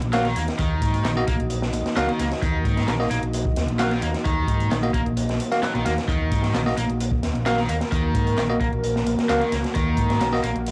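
A deep, detuned ambient pad with chorus, reverb and sidechain pumping opens this swaggering, gritty breakbeat excerpt in Eb minor at 131 BPM, alongside a round, overdriven fingered electric bass and a tape-softened electronic garage kit of handclaps and hi-hat sitting in the background. From 0.1 seconds a crunchy, saturated breakbeat kit with a tight kick and medium-tuned snare sits up front, while a bright, picked stack guitar riff runs through overdrive and analog delay. A bell-like tine electric piano adds stabs roughened by 12-bit sampler grit and delay, all heard in a small booth with a homemade cassette character.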